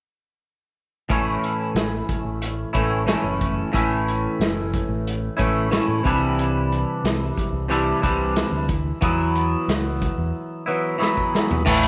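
A twangy, clean electric guitar sits up front, playing a riff colored by flanger in this trippy, hypnotic stretch of psychedelic rock cut from a longer piece. Beneath it, a fingered electric bass sounds round and dark, while a vintage acoustic drum kit, recorded in a small, pumping room with a rolled-off top, brings dark cymbals, a medium-tuned snare and a punchy kick in a straight 4/4 feel. The harmony moves from A to Cadd9 and then Esus2, and a drum fill begins at 11.0 seconds. At 11.7 seconds a reedy, breathing pedal harmonium and a grainy, bright egg shaker slip in briefly from the background. Light studio reverb gives the whole a gentle sense of space.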